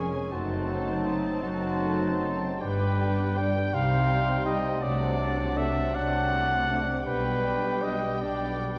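Classical orchestral music in a slow, rubato 6/8 at 53 BPM by dotted quarters, elegiac and yearning, with uneven, breathing beats. Muted violins carry the melody high in their range with a dark, veiled, lush vibrato, while a very quiet second violin line, a small flute group with pure straight tone, a warm clarinet and a vintage-tinged oboe weave secondary lines around it. Muted violas and a distant, roomy bassoon fill the accompaniment in the background, a mellow French horn section holds very quiet sustained chords until 8.0 seconds, and a bright, ringing concert harp plays fingerpicked arpeggios. The most prominent voice is an up-front trumpet with light vibrato punctuating the texture in stabs, set over muted cellos and double basses anchoring the bass. The harmony moves from F#dim7 through G and Cm to D7/C before settling on G/B, heard through a wet scoring-stage reverb and the worn, warbling pitch drift of old cassette tape, in a fragment cut from a longer piece.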